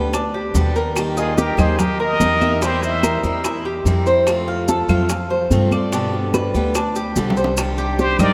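A vast, echoing cathedral reverb surrounds this short, danceable Cuban son and guajira clip in C minor at 145 BPM, where an up-front, woody upright bass and a metallic, double-strung tres playing arpeggios sit over a boxy, fresh-stringed parlour guitar, with soft-handed, thick-skinned congas in the background, grainy maracas, very quiet low-tuned bongos and dry, woody claves. At 1.2 seconds a forceful plunger-muted trumpet with wah-wah and vibrato carries the jazz-style melody alongside a bright, pop-style second trumpet, both dropping out at 3.2 seconds and returning at 8.0 seconds. A drum fill at 7.2 seconds leads into a Cmadd9 chord.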